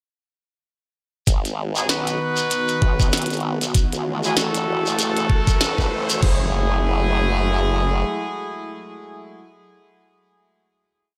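Starting at 1.3 s with an overdriven, knocking electronic kick up front, a glitchy kit of tiny snare, clicky closed hats and crash in a swung, edited beat with gated reverb, grainy hand-played shekere sixteenths and an up-front, detuned formant-sweep wobble bass with changing wobble speed, this swaggering, gritty glitch hop piece at 97 BPM in F# dorian builds over G#m7 and F#m7, as punchy, octave-doubled horn stabs with digital delay and a warbling, nostalgic lo-fi pad, both with sidechain pumping, join and background risers and impacts mark the transition, before the drums stop at 6.4 s and the pad and horns hold an F#m9 final chord until 9.5 s, with the wobble bass beneath them until 8.0 s, in a bright 1980s-style digital production with light ambience.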